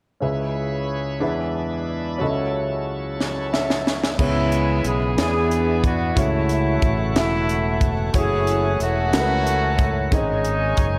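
A smooth-topped horn section carries the melody with light vibrato, slapback echo and tape echo in this solemn, soulful slow gospel excerpt in C# minor at 61 BPM in 6/8, entering at 4.2 seconds alongside fingered electric bass, airy distant flutes and a gritty, saturated fusion drum kit that first arrives at 3.2 seconds with a fill beside the intimate, long-sustaining grand piano, while a shouting, lightly overdriven tonewheel organ with slow rotary speaker holds chords throughout a lush hall that gives a big arena sound.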